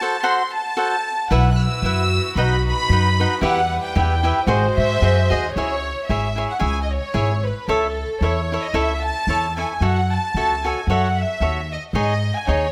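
A swung 2/4 lilt drives this festive, proud mariachi fragment, where a soft-attacked, floating violin section carries the melody over crisp picked cavaquinho, while a woody, thumpy pizzicato upright bass enters at 1.3 seconds alongside a richer, biting chamber violin section that holds sustained chords until 5.5 seconds, as the harmony settles into the minor at 5.6 seconds within a moderate recital-hall reverb.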